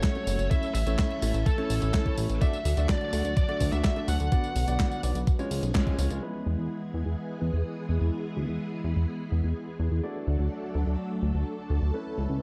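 A distorted, high-gain lead guitar carries the melody through tape echo for the first 5.0 seconds of this nostalgic, bittersweet italo disco excerpt at 126 BPM, over swirling phased string-machine chords, intimate grand piano stabs with audible action noise, and a glossy, saturated chorused synth bass that enters at 0.3 seconds. A thumpy, up-front electronic kick drives the groove until 6.0 seconds, alongside a sampler-style drum machine of handclaps, hi-hat, a medium-tuned snare and tambourine, darkened by low-pass filtering. The band hits an accent at 5.7 seconds before the second section settles on E and D, all in a dark, lightly reverberant production.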